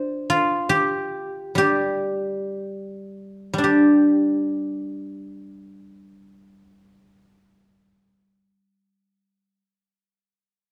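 In a free, rubato pulse drifting between 53 and 72 BPM over a 4/4 frame, this serene, pastoral Chinese traditional passage, cut from a longer piece, features a solo guzheng in the G shang mode that slows down through its first 3.7 seconds before moving into a new section. Played with fingerpicks and sitting up front, the acoustic guzheng has a ringing, silvery tone across its range from G3 to D5. Light reverb and a dark production surround it.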